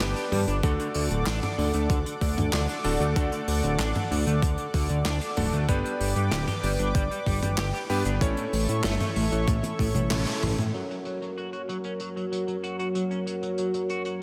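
Synthwave with a nostalgic, romantic feel, cut from a longer piece and set in a lush hall reverb with a big arena sound. A shimmering, detuned pulse-width pad holds sustained chords up front with sidechain pumping, over a fat, saturated sawtooth bass that plays until 10.7 s and an overdriven, thumpy electronic kick that stops at 9.9 s. A bright, clean guitar riff and clangy electric grand piano stabs sit in the background with delay, and an airy, filtered acoustic kit with handclaps plays a drum fill that spans a band accent before filter sweeps on the drums and guitar carry the final section.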